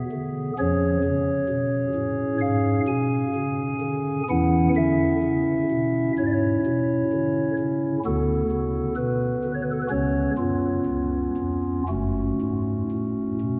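A chamber organ on a stopped flute stop opens at 0.0 s, playing alone in a grave, dark chorale-style classical piece. The pace sits around 64 BPM in 4/4, with a rubato feel that lets the phrases breathe. The organ's tone is hollow and mellow, with a soft chiff at the start of notes, and it sits up front even as a cathedral reverb with a long 5.0-second decay washes around it. Its range stretches from a deep F#1 up to G#5. The harmony begins on a rootless E and moves through C#/E#, C#m/E, Bm/D and C#7 before coming to rest on F#m at 11.9 s, where this fragment of a longer work ends at 13.6 s.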